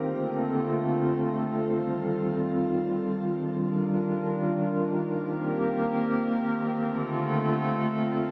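A warbly, tape-like pad carries this melancholic hip hop fragment entirely on its own, sustaining detuned layers of square, triangle and sine tones that bloom slowly and fade on a long release. Its nostalgic, lo-fi character comes from chorus, tremolo, a built-in reverb and a low-pass filter, which leave it mellow yet up front, spanning D3 to Bb4. The music floats in free time, tuned a little below standard pitch at A4 = 437 Hz, and drifts from Dm7 to F9 before a second section at 3.4 s moves through Ebmaj9 and Cm7 and settles back on Dm7. A moderate shimmer reverb with a long 5.5-second tail gives the dark, warm production a spacious feel. Cut from a longer piece, it lasts about 8.3 seconds.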